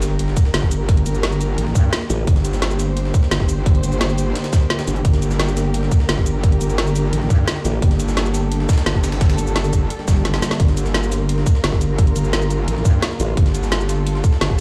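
A metallic, distorted wobble bass sits up front in this tense, mechanical slice of dark technical drum and bass, churning through G minor from G1 to G2 with chorus, tube saturation and sidechain pumping across the whole 14.6 seconds at 173 BPM in straight 4/4. A tight, layered electronic kick enters at 0.4 seconds and sits up front in the mix, while a produced drum and bass kit adds a woody snare, metallic hats and shaker, backed by a gritty, pitched-up breakbeat sampler kit with a high-tuned snare, high-pass filtered and pushed into the background. Short bursts of a formant-sweep wobble bass, a pulse-and-sine tone with chorus, punch in on A1 at moments such as 2.1 and 7.6 seconds. Beneath it all, a dark, lush string section holds bowed chords with vibrato and a smooth top between D3 and C5, pumping under the sidechain. A very quiet sub drop opens the clip, a swell arrives at 10.0 seconds, and a drum fill joins it at 10.2 seconds. 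The sound is dry and close, yet carries the stony ring of a bare room heard through a big sound system.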